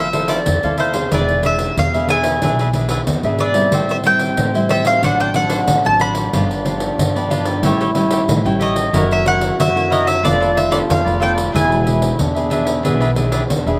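This dry outdoor recording of bittersweet, yearning samba and choro at 92 BPM sets an up-front, woody mandolin melody on double strings over crisp picked cavaquinho, fingerpicked nylon-string guitar with audible finger squeak, a growly pizzicato upright bass and a jingly pandeiro, while a breathy, whispered trombone enters at 3.7 seconds to add an intimate second line with light vibrato.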